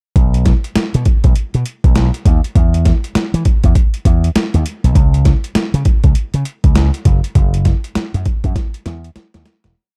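A dark, dry production carries this short, flirty and bouncy new jack swing R&B piece at 100 BPM with a heavy 16th-note swing, where a gritty, overdriven, up-front sampler-style boom bap kit, re-recorded in a small room with a thumpy kick, medium-tuned snare and hi-hat, drives a hard-swung drum-machine beat alongside a bright, punchy slap bass run through an envelope filter that plays a bouncy synth-funk line with muted ghost notes, until the track fades out from 7.4 seconds and the drums close on a fill at 8.6 seconds.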